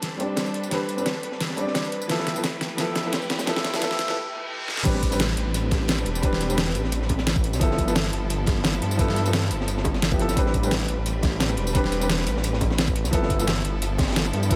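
Wrapped in light studio reverb, this lush, rolling liquid drum and bass excerpt moves at 174 BPM in A minor, swinging its sixteenths gently over chords that alternate between Am11 and G13. A felt-muted upright piano, soft and intimate with a short sustain, plays accompaniment under a low-pass filter sweep and digital delay, while a close, biting symphonic string section holds sustained chords in the background with vibrato and sidechain pumping. The opening build-up layers a drum fill over a pop kit, with its deep, overdriven snare, crash, hi-hat and tambourine up front, and a dark, gritty breakbeat kit with a high-tuned snare, while tight, soft-handed bongos sit tucked behind. A very quiet riser, reverse cymbal and downlifter enter at 1.4 s, leading to a short break before the drop at 4.9 s. There an overdriven, knocking electronic kick enters alongside a menacing, evolving detuned saw bass that swells up front with a saturated yet mellow edge, carrying the groove to the end of the cut.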